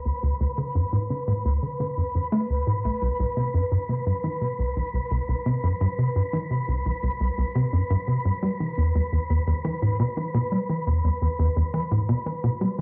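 A roomy, reverb-soaked cassette recording carries this hypnotic, cosmic piece of ambient space music, cut from a longer work and moving at 86 BPM in a straight 4/4. An up-front sequencer bass drives a tight, punchy riff from C2 to A3, its detuned sawtooth-and-square tone plucked through a dark filter and colored by analog chorus, delay and tape. Behind it, from the very start, a breathy, wind-like tuned noise texture holds B4 with slow-blooming, sustained sine tones in plate reverb, while the harmony moves from D to C5 at 2.8 seconds and E5 at 8.4 seconds.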